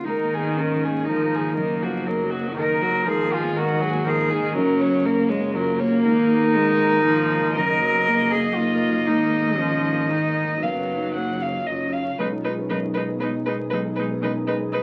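A rich, floating cello and a felt-muted upright piano open this melancholic, reflective neoclassical fragment, cut from a longer piece in G# dorian and moving in a rubato 3/4 at 119 BPM. Almost at once a close, intimate violin carries the melody with light vibrato and an airy sul tasto bow, while a single viola plays accompaniment beneath it and a woody, dark double bass holds the low end with vibrato and portamento. The piano sits soft and mellow in the background with short sustain, and at 1.3 seconds a glassy, ethereal FM pad slips in very quietly with a slow attack, long release and ensemble chorus. The cello carries a second line, pure and somewhat distant yet up front alongside the violin. The harmony circles through G#sus2, D#m/F# and F#maj7 before moving to B6 at 12.2 seconds. A moderate studio reverb surrounds the players, and the recording carries the crackle of a very old 78 rpm record.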